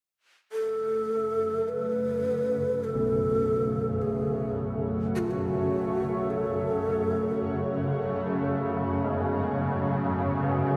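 Unsettling and dark, this slow dark ambient drone excerpt moves at 52 BPM in 4/4 with a straight feel, resting on a single F# minor chord throughout. A breathy, hollow shakuhachi carries the melody up front from 0.5 to 8.0 seconds, close-miked with a crisp, chiffy attack and vibrato, its bamboo tone trailed by a diffuse ambient delay. Beneath it, a swarming, detuned drone enters at 1.4 seconds, warbling and vintage in character as it evolves in the low register with its own built-in reverb. A bubbling, resonant sawtooth texture with random filter steps and chorus sits on a single A3, fading out over its span, while a cloudy, blurred granular pad fades in behind with sustained chords. Carillon bells in the background add bronze, ringing arpeggios through a diffuse delay, and the whole mix is bathed in a cathedral reverb with a 5.9-second decay.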